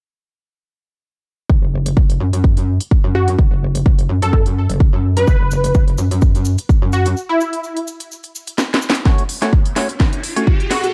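A swung sixteenth-note groove in four drives this bouncy, swaggering bass house fragment, with a punchy electronic kick up front from 1.5 seconds and a house kit of cracking snare and crisp hats sitting up front from 1.9 seconds. A metallic, aggressive wobble bass with saturated, chorused grit pumps against the kick, joined by a catchy plucky lead of detuned sawtooth voices with vibrato, treated with ensemble chorus and delay. A grainy acoustic cabasa adds live-room sparkle as the bass drops away into a break around 7.2 seconds. At 9.1 seconds the first chord arrives with hollow, organ-like stabs, phased and delayed and pumping, while a drum fill and an electronic riser push through the build-up. A very quiet, dark ambient pad surfaces in the final moments of this dry, loud mix.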